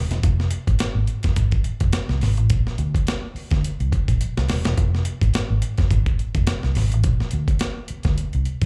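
This is a short cut from a longer funk piece, cool and driving at 106 BPM in 4/4, with a swung sixteenth-note feel and a home in F dorian. The vintage muted electric bass is heard first, played with the fingers from the very start and sitting up front with a dark, round, foam-muted tone that stays punchy through the amp, moving between Eb1 and D2. A breakbeat sampler-style drum kit joins at 0.1 seconds, gritty and pitched up, with a thumpy kick, a medium-tuned snare and hi-hat, its compressed, tape-warm sound placed close to the listener. At 4.2 seconds the drums break into a fill that runs to 4.8 seconds before the groove carries on to the end at 8.7 seconds. The sound is that of a live gig heard through the venue's PA, with the parts themselves kept fairly dry inside a club's ambience.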